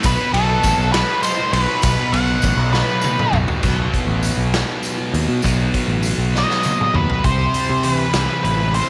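Mysterious and trippy, this short cut from a longer psychedelic rock piece rolls along at 67 BPM in 6/8, rooted in B phrygian dominant. A thick, double-tracked fuzz guitar with phaser drives the riff over a growling, overdriven fingered bass and a raw garage kit with a punchy kick, gritty saturation and a pumping stone-room sound, while a jingly tambourine sits in the background until 6.9 seconds. A dark octave-fuzz lead guitar with slapback echo carries the melody, dropping out at 3.4 seconds and returning at 6.4 seconds, and drum fills mark each section change under light studio reverb.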